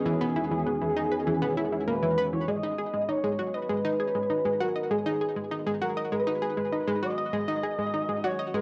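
A sustained, sweeping pad of detuned sawtooth chords opens with a smooth, gliding sawtooth lead singing between G#4 and D#5, joined at 0.1 s by a round, up-front analog pluck riff with a sub octave, as this cosmic, mysterious slice of ambient sequencer-driven space music at 99 BPM moves from E to G# minor at 2.5 s, its pad and lead bathed in plate reverb and the lead and pluck trailing tape echo, all captured as a home cassette recording.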